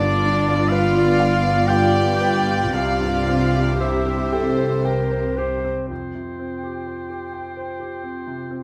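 Close, detailed microphones and a light reverb give this short fragment of a cinematic, emotional film score an intimate, uplifting and tender feel, moving in a slow, rubato 3/4 at 56-65 BPM over G7, C and Fsus2 chords. A dark solo cello and a warm, floating symphonic violin section carry the melody, while a clear oboe, an airy small flute group and a pure studio violin section in the background weave second lines, and a mellow clarinet joins them at 3.8 s. Underneath, a vintage-toned concert grand piano with deep bass, a very quiet woody viola section, a tight, very quiet French horn section and rich cello and double bass sections form the foundation; the strings and horns drop out between 4.9 and 5.7 s, and piano and woodwinds carry on.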